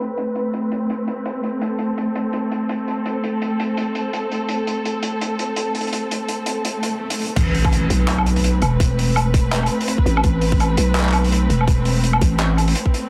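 Heavily compressed, filtered radio sound with light reverb and studio ambience frames this dark, heavy half-time drum and bass piece in A minor at 167 BPM, cut from a longer track. A muted, veiled string section holds lush, bowed Amadd9 chords with vibrato under a filter sweep and sidechain pumping, over a crunchy, saturated breakbeat kit of dark cymbals, handclaps, hi-hat and woodblock with a swung, half-time feel. A very quiet electronic swell from 6.8 seconds leads into the drop at 7.4 seconds, where an impact lands and a tight, layered electronic kick and a growling, buzzy 808-style bass come up front.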